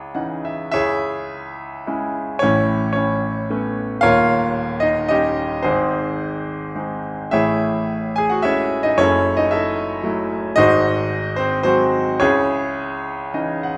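Set in the moderate reverb of a recital hall, this cool, bittersweet passage of lyrical classical solo piano in C# minor features an up-front concert grand with a clear, natural tone and deep bass, moving at 110 BPM in a rubato 3/4 with uneven beats through chords from C#madd9 and Aadd9 to D#7, Amaj7 and G#7, with brief piano fills at 0.0 and 13.1 seconds framing the single section as the harmony comes back to C#madd9.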